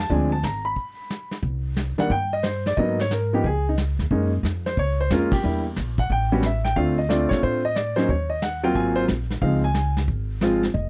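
Jazz piano trio in a swinging, playful mood, moving at a brisk clip with a swing feel, cut from a longer piece. A warm concert grand piano carries the melody with natural tone and deep bass, while a pizzicato upright bass on steel strings sits underneath, sounding woody and thumpy. A vintage brush drum kit plays with brushes, giving a dark, smooth texture with dark cymbals, a medium-tuned snare and a tight kick. The band drops out for a short break from 0.8 to 1.4 seconds and hits a shared accent at 5.3 seconds, as the harmony wanders through half-diminished chords, suspended and ninth colours toward a closing Dbmaj7. All three players sound up front in a dry, close 1970s-style studio room with little reverb.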